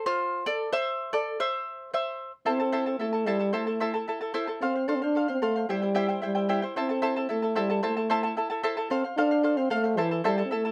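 A straight 2/4 pulse at 112 BPM drives this melancholic, earthy Andean folk excerpt in A minor, tuned to A4 = 444 Hz: a fingerpicked, shimmering charango with double strings plays alone up front until a mellow French horn enters at 2.5 seconds with light vibrato, a smooth top and a slapback echo, carrying a classical-style melody over chords moving among Am, F and C, in a close, detailed recording with light reverb.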